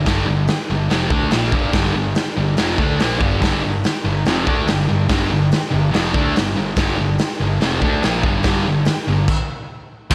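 Garage rock in G minor with a gritty, swaggering strut, driven by a bright, double-tracked fuzz guitar riff up front, a round overdriven picked bass sitting in the background, and a saturated, up-front drum kit with a punchy kick, medium-tuned snare, hi-hat and crash in a small stone room, with a stop arriving at 9.3 seconds.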